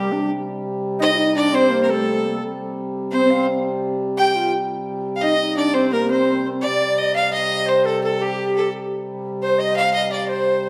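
A bright, biting bowed fiddle leads this driving, ancient-feeling medieval dance in C dorian: one intense player with light vibrato, up front, at 114 BPM in a straight 6/8. Alongside it, a tongued tenor recorder with woody chiff and expressive vibrato shares the second line with an airy, soft-attacked and unsteady wooden-headed alto flute that drops out at 6.5 s, while a reedy, breathing hand-pumped harmonium holds a boxy drone. A wet recital-hall reverb and a dark, warm production frame this passage cut from a longer piece, and a new section begins at 6.6 s.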